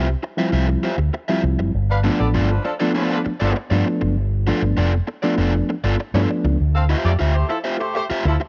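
A crunchy overdriven guitar, a reedy, lightly overdriven electric piano playing stabs and a punchy fingered electric bass through an envelope filter open this cool, funky excerpt at 99 BPM in D dorian over Dm11 and G9. A tight horn section with light vibrato and a clear tone joins at 1.9 seconds, and the piano drops out at 6.6 seconds as the dry, close 1970s-style studio sound shifts into a new section.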